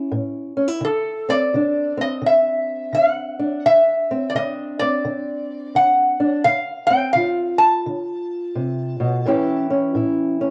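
A nasal, metallic resonator slide guitar, played with fingerpicks and carrying cassette-tape grit and plate reverb, sings a soulful melody from 0.8 to 9.6 seconds over a dark, boxy, old-stringed ladder-braced acoustic guitar fingerpicking swung accompaniment in 4/4 throughout this short, gritty country blues excerpt cut from a longer piece, both up front in a small, homey room.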